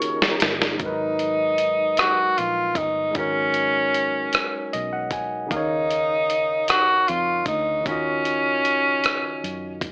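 A warm tenor saxophone carries the melody up front in this slow six-eight R&B excerpt, its light vibrato and roomy, distant tone giving the line a yearning, sultry character as it moves between Db4 and Db5. Beneath it, a bright, barky tine electric piano with light overdrive plays accompaniment throughout, adding a fill from 4.3 to 5.5 seconds. A dusty, sampler-style drum kit, gritty and compressed with a thumpy kick, a medium-tuned snare, hi-hat and rim click, opens with a fill before settling into the groove. A tonewheel organ with key click, chorus vibrato and a slow rotary speaker sounds only in the opening 0.8 seconds, while a dark, foam-muted fingered electric bass, round and punchy, enters at 0.4 seconds. The harmony moves from Ebm7 to Abm9 and back, and the whole is coloured by light reverb and a lo-fi AM radio sound.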